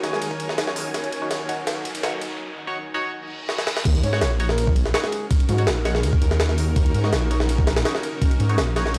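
Up front, a gritty, compressed jungle sampler-style kit with a thumpy kick and high-tuned snare drives this nostalgic, atmospheric drum and bass excerpt, building through fills, a riser and a reverse cymbal before a thick, menacing detuned saw bass drops in at 3.9 seconds. A cloudy granular pad and a nasal, band-passed chord stab with phaser and dub echo hover over an Ebm7 chord, the stab under a filter sweep during the build. An airy wind-like noise texture stops at 2.4 seconds, while a breathy flute-like lead in the background offers a brief phrase at the start and returns from 4.0 seconds. The recording sounds dry and hardware-rough, with transformer saturation, vinyl crackle and light digital ambience.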